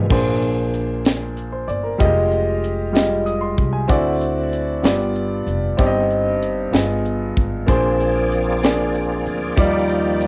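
A woody, long-sustaining upright piano accompanies this solemn, fervent slow gospel passage in 6/8 through rich changes from Bb9 and Fm9 to G7b9b13 and Ebmaj9, over pizzicato upright bass and a crisp, airy fusion drum kit with a high-tuned snare and punchy kick, while a gritty, overdriven tonewheel organ with key click and slow rotary speaker, heard only briefly at the very start, returns on sustained chords at 7.7 s, all captured in a lightly reverberant home cassette recording.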